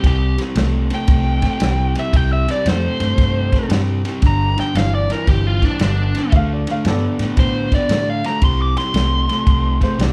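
A bright, overdriven lead guitar carries the melody through this soulful, swaggering electric blues shuffle excerpt, set over a dark, picked hollow-body riff guitar, a round, foam-muted fingered bass and a dry, up-front soul drum kit with a tight kick and dark cymbals, while a woody, slightly detuned upright piano adds a second line from 6.3 seconds, all with light reverb as a band playing live in one room.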